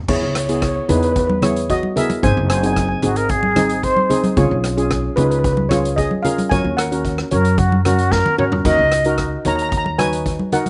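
A sunny, festive calypso fragment opens with a shimmering lead steel pan carrying the melody over mellow, softer cello pans, a woody, thumpy pizzicato upright bass and a polished street-band drum kit with a boomy kick and dark cymbals; ringing, hard-hand congas join at 0.9 seconds, an airy, expressive concert flute with vibrato and slapback echo adds a second line from 3.0 seconds, and a drum fill arrives at 8.1 seconds, all in a dry outdoor sound.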